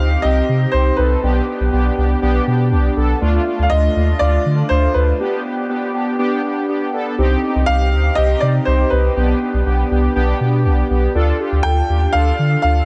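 A lightly reverberant studio sound frames this cool, melancholic synth-pop excerpt in C dorian at 121 BPM, with a straight 4/4 feel. An open-toned baby grand piano carries the melody through shimmer reverb and digital delay, while dark, detuned sawtooth synth brass with chorus, vibrato and a filter sweep gives up-front accompaniment over a deep, round sine sub bass. The chords move through Cm, G/B and Dm, with a break from 5.2 to 7.2 seconds before the progression repeats.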